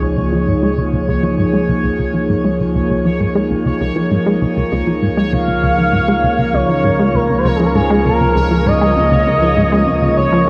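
A straight 4/4 pulse at 99 BPM drives this expansive, cosmic stretch of sequencer-driven space music in Db major, cut from a longer piece and resting on a single Db chord throughout. A punchy, funky analog bass riff with a fast, plucky filter attack carries the groove, its tone evolving under a filter sweep that runs the full 10.5 seconds, with shimmer reverb and tape echo trailing each note. Alongside it sits a warbling, vintage drone on low Db, detuned and chorused, while a bright, full-bodied resonant pad sweeps through sustained chords up front, its ring-modulated edge softened by chorus and shimmer reverb. High above, a bubbling texture on Db5 hops through random filter steps, bathed in its own reverb plus shimmer. At 5.3 seconds a smooth, mellow synth lead takes the melody, expressive with vibrato and a moving notch, lush chorus, tape echo and a cassette-tape tint, all within a wet plate reverb that lends the whole mix a spacious, cassette-colored glow.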